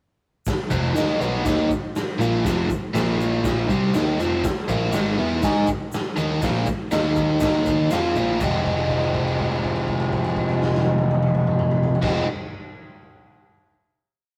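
A gritty, saturated garage drum kit with a punchy kick and a grainy egg shaker in the background open this short, menacing garage rock piece at 0.5 s, settling into a swaggering stomp groove. A biting, double-tracked overdriven guitar takes the lead with an up-front power-chord riff, doubled underneath by a driving eighth-note overdriven bass. At 8.4 s the riff gives way to a held final F minor chord, the shaker stops at 8.6 s, and the whole take has the rough feel of a rehearsal room with a moderate stone-room reverb.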